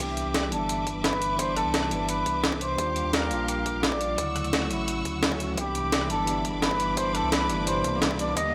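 This dreamy, uplifting liquid drum and bass build-up at 172 BPM features a mellow, distant flugelhorn carrying the melody through a dub echo, set over a bell-like tine electric piano and lush, bowed strings that carry the grit of a vintage 12-bit sampler. Up front, a pitched-up breakbeat kit of hi-hat, rim click and a medium-tuned snare sounds compressed and tape-warm, while a dark detuned saw bass rumbles and beats beneath it with tube saturation. A tight electronic kick enters at 0.9 seconds, layered in the background with a high-pass filter and the air of a small room. A very quiet riser sits under the whole passage as the chords move from Cmaj9 through Ebmaj9 and Dmaj9 before returning to Cmaj9 at 5.6 seconds. A moderate hall reverb wraps the mix in a lush space, and this short cut from a longer piece feels suspended and hopeful.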